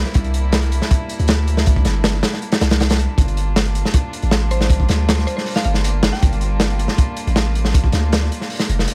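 A crunchy breakbeat drum kit drives this frenetic, atmospheric drum and bass and jungle excerpt at 158 BPM in a straight 4/4, its gritty, saturated hi-hat, tight kick and medium-tuned snare sitting up front with a rolled-off top. Beneath it, a deep, sine-like 808-style bass holds long notes with a fast attack and natural decay, also placed up front. A distant chamber string ensemble sustains bowed chords throughout, its reedy gut-string tone and light vibrato giving a period-style richness as the harmony moves from C7 to Gm7 at 3.2 seconds in G dorian. At 4.5 seconds a woody, round FM pluck with a mallet-like character enters in the background, colored by chorus, cassette tape wear and dub echo, and it falls away at 6.4 seconds. A small room ambience wraps the whole short passage, which is cut from a longer piece.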